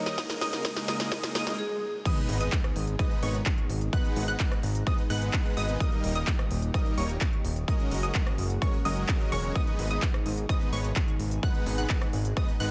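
A festival progressive house build-up in G# minor at 128 BPM opens on a metallic, ringing hard-mallet vibraphone melody with dub echo, set in the background over a thick, warbling unison pad, a detuned sawtooth pluck playing arpeggios through lush chorus, and huge, bright supersaw chords carrying the riff with a cassette-tape tint, while a riser and swell climb beneath a big-room drum kit fill of crisp hats, handclaps, rim clicks, crash cymbal and punchy snare, plus a tape-warm electronic kick up front. After a brief break, the drop lands at 2.1 seconds with an impact and sub drop, and a fat analog bass enters moments later at 2.3 seconds, the pad, pluck, supersaws and bass pumping against the kick while the chords move through G#m, D# and F#add9. This anthemic, emotional excerpt keeps a dry overall sound, apart from the drums, which ring in a large room.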